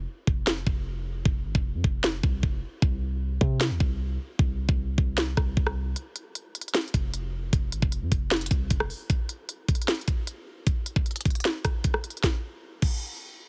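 An electronic trap drum kit sits up front, its knocking kick, sharp snare, crisp hi-hats, rim clicks and crash cymbal setting a half-time hip hop groove from 0.3 seconds. Beneath it, an up-front 808-style bass supplies a deep, boomy sine tone with a noise layer, a fast attack and a mellow decay, holding the low end until it drops out at 8.9 seconds. The drums carry on alone until 12.9 seconds, and the music shifts into a new section just before the clip ends. The mood is melancholic and eerie, heightened by a dry, heavily compressed sound that recalls a radio broadcast. This short passage is cut from a longer piece.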